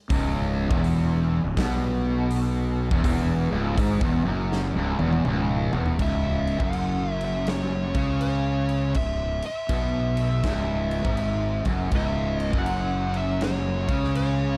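A double-tracked fuzz guitar riff sits up front in this brooding, ominous stoner and doom metal excerpt in C# minor at 81 BPM with a swung feel, over a growly overdriven fingered bass and a big rock drum kit with punchy kick and bright cymbals that plays a fill from 4.5 to 6.0 seconds, before a fuzz lead guitar with tape echo enters high at 6.0 seconds, all in a dark, small-room production.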